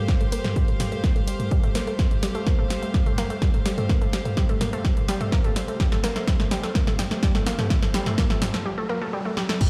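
Cinematic and dramatic, this 126 BPM melodic techno build-up in G minor sets a nasal, wave-folded analog pluck arpeggio under a filter sweep with chorus, dub echo and sidechain pumping over a deep, detuned analog pad, biting chamber strings that pump and drop out at 8.7 s, a heavy, tape-warm electronic kick with a punchy techno kit of snare, hi-hats, toms and crash rolling through drum fills, and a very quiet riser and sub drop arriving at 5.0 s, all in a big, reverberant room before a brief break.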